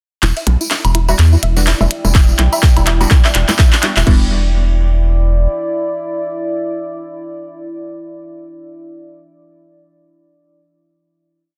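A rubbery, nasal square bass drives this short, hypnotic and cool minimal techno piece in E minor at 125 BPM with a swung 16th feel, joined by a punchy four-on-the-floor house kick and crash, clicky programmed hats and claps, a very quiet gritty looped breakbeat with a high-tuned snare, a jingly tambourine, tape-echoed woodblock and blip clicks in cross rhythm, and a twangy string-like resonator pluck whose 3-step loop drifts against the bar under a filter sweep, all building from 0.2 to 4.1 seconds. Sparse, phased dub chord stabs and a deep, moody sawtooth pad with built-in reverb enter during the build and carry the final chord until 8.8 seconds.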